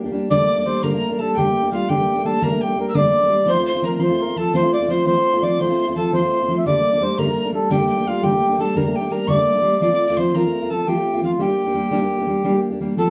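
Celtic folk in a straight 9/8, wild and driving in mood, cut from a longer piece. A full-bodied jumbo steel-string acoustic guitar opens alone at 0.0 seconds with fingerpicked accompaniment, and finger squeak comes through its up-front sound. At 0.3 seconds a reedy, round accordion takes the melody close to the listener, joined by a metal whistle playing a second line higher up and set lower in the balance, its tone breathy and bright with tongued chiff, lifted highs and an unsteady straight tone. The harmony moves between Gmadd9 and F before settling on Gm near the end. A wet studio reverb with a short decay places the trio a little further back in the room.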